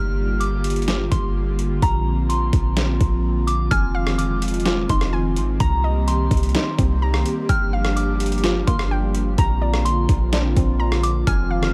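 Spacious and ethereal, this atmospheric cloud-rap excerpt of hip hop moves with a half-time feel over chords that drift from Gm7 and Bbadd9 through Fm7 and Cm7. A soft, pure FM synth bell carries the high melody from the start, dressed in chorus, phaser and tape echo, while an airy, breathy pad holds sustained chords underneath with chorus and sidechain pumping. A clean, deep 808-style bass sits up front with a boomy, dark sine tone, joined at 0.4 seconds by a gritty, pitched-down boom bap sampler-style kit whose thumpy kick, medium-tuned snare, rim click and hi-hat are compressed and overdriven, with the sound of a small room. At 3.7 seconds a hollow, bouncy square-wave pluck enters with arpeggios, treated with chorus and tape echo and quieter than the other parts. Light digital reverb gives the whole piece a floating sense of space.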